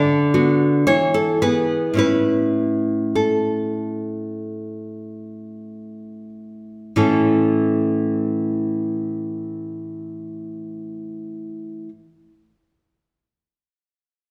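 An accompanying fingerpicked nylon-string guitar shapes this tender classical piece, its full-bodied acoustic tone sitting up front and spanning A2 to D5. The tempo is slow, roughly 45 to 58 BPM in 4/4, with a rubato feel that eases and slows down through the first 7.0 seconds. In A major and tuned to A4 = 436 Hz, the guitar opens on Bm/D, moves to E and settles on A by 2.0 seconds. A second section begins at 7.0 seconds, and the guitar plays until 11.9 seconds. A wet recital hall reverb with a 1.4-second decay surrounds the playing, lending the passage a warm glow within this short excerpt cut from a longer piece.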